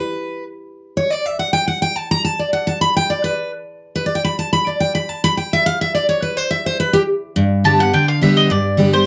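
A bright, full-bodied jumbo steel-string acoustic guitar opens this lively, driving bluegrass fragment, picked up front and taking a solo over an unaccompanied, chordless stretch that runs to 7.4 seconds. The tempo is a brisk 211 BPM in straight 4/4, in G major with tuning set to A4 = 441 Hz, and the guitar ranges from G2 to B5. At 7.4 seconds the harmony settles on a G chord as the solo passes to the mandolin, which enters at 7.6 seconds. Its mellow, woody double-string tone is picked up front in a high register from C5 to A5 while the guitar carries on beneath it as accompaniment. Close, detailed miking catches both acoustic instruments in a small room with a moderate, short reverb, and the passage is cut from a longer piece, ending at 9.1 seconds.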